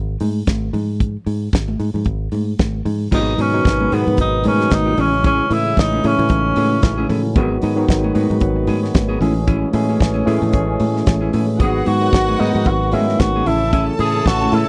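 A distant, roomy tenor saxophone with light vibrato carries the melody from 3.1 seconds in this driving, danceable disco excerpt at 113 BPM in G# phrygian, riding a punchy, foam-muted fingered electric bass and a dry 70s drum kit with a fat snare, tight kick and rolled-off top, joined by very quiet high-tuned congas, a mellow, clean electric guitar, a tine electric piano in the background with short fills, a dark, classical-style French horn section holding chords over G#m7 and Amaj7, and a lush, bowed string section that enters at 11.6 seconds, set in a close 1970s-style studio sound with small-room ambience.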